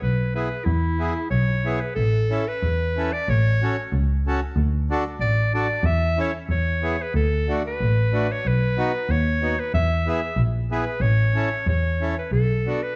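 A bright, smooth-topped clarinet in a classical style and a clear, focused bowed double bass with vibrato open this bouncy, jolly alpine folk dance together, both up front, and a reedy, mid-forward accordion joins at 0.3 seconds to fill in the accompaniment. The clarinet carries the melody as a solo over a lilting two-beat feel with a light swing and a touch of rubato, while the harmony moves through a short opening passage into a longer second section that runs to the end. Light reverb and a dark, warm production shape the snippet's sound.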